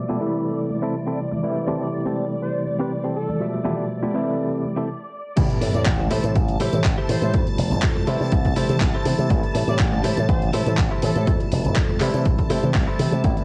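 A straight 4/4 groove at 122 BPM drives this sensual, funky filtered disco house excerpt in A minor, opening with a barky, overdriven tine electric piano with fast tremolo, a swirling phased string machine, a twangy clean guitar riff with spring reverb, and background tambourine and congas, all pumping under a low-pass filter while cycling through C6, Am7 and Fmaj9#11. A nasal, fat analog synth brass melody with tape echo and vibrato enters at 1.8 seconds, and after a brief break the drop lands at 5.4 seconds, bringing a bright, punchy envelope-filtered slap bass and a punchy electronic kick up front, gritty sampler-style drums with crash, handclaps and hi-hat, and a sub drop impact. The whole has the light reverb of a home recording on cassette.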